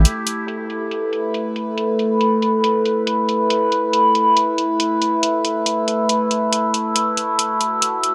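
Swung sixteenths at 139 BPM in 4/4 drive a half-time feel in this dark, cavernous deep dubstep excerpt, with an overdriven, layered electronic hi-hat entering at 0.1 s, its hats, snare and room muffled by low-pass filtering. Up front, an overtone-sweeping drone holds sustained chords from the very start, moving to A5 at 0.5 s, its sawtooth-and-sine tone wave-folded and resonant, with slow attack and long release, thickened by chorus, phaser and built-in reverb. The dry, gritty hardware sound sits in a moderate echo chamber.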